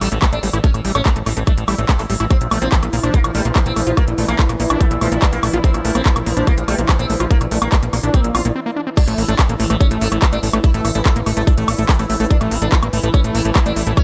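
A straight 4/4 pulse at 144 BPM anchors this hypnotic, psychedelic trance passage, cut from a longer piece, with a tight, up-front electronic kick entering at 0.2 seconds over an overdriven techno kit of smooth hats, handclaps, woodblock and crash cymbal. Underneath, a punchy, funky analog bass sits forward in the mix, its sawtooth and pulse-wave tones shaped by a fast-attack filter pluck and tube saturation. A buzzing, plectrum-plucked sitar carries the melody with shimmering sympathetic strings, colored by phaser, delay and sidechain pumping, while a squelchy, screaming acid riff with resonant filter sweeps, distortion, chorus and tape echo snarls further back. From 2.3 seconds a bubbling stepped-filter texture of detuned, soft-attack sawtooth chords drifts in, its random filter steps wrapped in chorus and built-in reverb as the harmony moves from A5 to Bb5. A brief break at 8.6 seconds gives way to a drop at 9.0 seconds, returning to A5, all set in light digital ambience with audible lossy compression artefacts.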